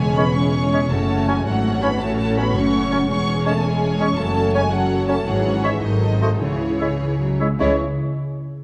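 Rubato 6/8 at 100-112 BPM, counted in dotted quarters, drives this dramatic, restless fragment of a fast romantic symphonic movement in C# minor. Lush first violins carry a focused melody above a warm second violin line, while rich violas and a bassoon share the accompaniment, distant mellow French horns sustain chords, and a ringing concert harp plays arpeggios. Clear cellos and double basses hold the bass, a very quiet clarinet, oboe and hollow, airy flute ensemble add second lines from 0.2 s, and medium-mallet timpani arrive at 6.4 s, inside a dark, wet scoring-stage reverb.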